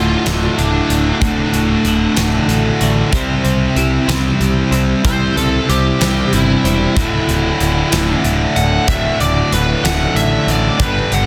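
A bluesy, distorted lead guitar carries a solo across this bittersweet, cathartic stretch of quiet-loud alternative rock in 6/8. Underneath, an up-front, high-gain distorted guitar pounds out a bright riff, joined by a second overdriven guitar riff sitting in the background and a growly fuzz bass with overdrive. A clean, compressed twelve-string electric guitar shimmers through phased arpeggios until it drops out at 7.0 seconds, just as the harmony returns from C to D. A huge arena drum kit enters at 0.3 seconds with a fat snare, punchy kick and hi-hat ringing in a big room. The mix is dense and heavily limited with light reverb, and the passage is cut from a longer piece.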